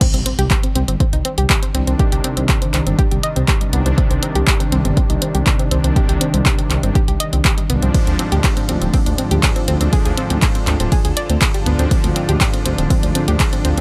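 A very quiet electronic impact opens this dark, driving melodic techno excerpt, landing at the start of a drop alongside a punchy, tape-warm kick that sits up front and an analog drum machine of crash cymbal, handclaps, hi-hat and ride, both with the sound of a small room. At 121 BPM in a straight 4/4, a soft, round pluck spins mellow arpeggios through chorus and tape echo, while a menacing detuned saw bass, saturated and swelling through its filter, rumbles underneath. An evolving wavetable pad enters at 1.2 seconds with sustained, morphing chords held in the background under chorus and its own reverb, and a brassy analog pad follows at 1.7 seconds with bold, bright stabs carrying vibrato and tape echo. The bass, pluck and both pads pump against the kick, and the harmony moves from C minor add9 to a diminished chord on D at 7.9 seconds. A digital ambience surrounds the mix, giving the whole passage a taut, hypnotic pull.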